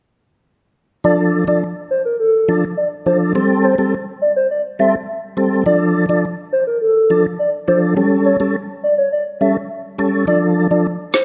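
A hollow, clarinet-like synth lead carries the melody from 1.0 seconds over a percussive tonewheel organ, whose key click and slow rotary speaker give a clean, chorus-vibrato shimmer to the D minor chords moving through Am7 and A7. This bouncy, sultry dancehall excerpt sits at 104 BPM with a dark production and light reverb, the lead's woody tone softened by chorus and tape echo. A woody electronic snare lands up front only at 11.1 seconds, just as the cut ends.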